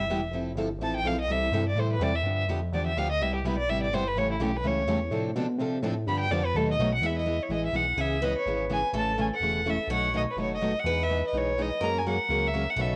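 Lively, swinging acoustic string jazz manouche, cut from a longer piece, with a rich, reedy, gut-string violin soloing up front in period style with light vibrato over a bright, boxy picked steel-string guitar and a fat, dark, wave-folded sawtooth analog bass with a filter sweep and a moving notch. A softer plugged-in acoustic guitar joins in the background at 3.2 s, and at 7.0 s the music moves into a new section where another picked acoustic guitar adds a second line; finger squeaks can be heard on the two unplugged guitars. The guitars carry a cassette-tape tint, and the whole home recording sits in a moderate spring reverb.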